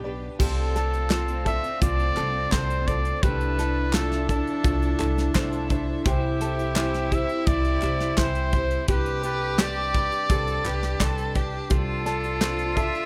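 Nostalgic and warm, this excerpt of indie folk moves in a straight 4/4 with an arrangement that builds. A dark, shimmering twelve-string acoustic guitar picks the accompaniment with a boxy, woody tone, while a light, thumb-plucked ukulele plays arpeggios through an analog delay in the background, and a chamber string section holds pure, floating sul tasto chords behind them. An up-front pizzicato upright bass gives a thumpy low end, and from 0.4 s a close-miked trumpet carries the classical-style melody with light vibrato and a soft attack, accompanied by a distant bowed cello playing a smooth second line. A brushed kit, placed up front, with a tight kick, snare, hi-hat and crash, drives the pulse, and a hollow group handclap joins in the background at 1.1 s. The whole band sits in a small room ambience.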